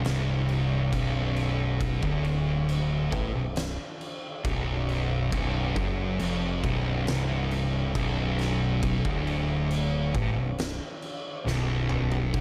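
Two thick fuzz guitars and an oversized, low-tuned acoustic drum kit open this ominous, sludgy stoner and doom metal excerpt together, one guitar riffing up front and the other dark in the background. A growling, overdriven bass joins at 0.1 seconds, and the gritty, saturated kit, with its fat snare and punchy kick in a pumping stone room, closes with a fill at 11.5 seconds under light reverb.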